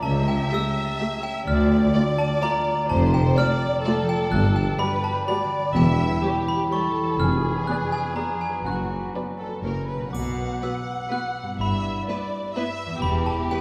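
Sneaky and quirky, this playful, whimsical film cue moves at 125 BPM in a straight 3/4, shifting from D minor to B minor at 4.3 s, with a bell-like glockenspiel struck with brass mallets carrying the melody over a vibrato-laden chamber violin second line, ringing fingerpicked concert harp arpeggios, and a lush symphonic viola section murmuring in the background. Underneath, an expressive, distant cello section, a dark, soft-attacked double bass section and a mellow tuba share the bass, the tuba dropping out at 10.0 s, while a rich, focused violin section sits far back with the melody. A triangle adds a brief touch at 10.1 s as the harmony settles onto B minor, and the whole ensemble is heard from further back in a reverberant scoring stage, in a fragment cut from a longer piece.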